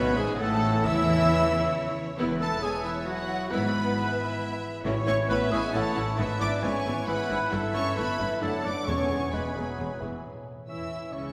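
Classical and dramatic yet lively and graceful, this fast romantic orchestral passage in A major at 134 BPM in 3/4 sets a lush, vibrato-rich violin melody over second lines from hollow flutes, a distant oboe, clarinet and more violins, with rich violas accompanying, dark French horns and trombones sustaining chords, ringing harp arpeggios, soft-attack trumpet stabs, cellos and double basses on the bass, and hard-mallet timpani hits at 0.0, 4.8 and 8.9 seconds, all in a wet concert hall where a bassoon joins at 9.3 seconds.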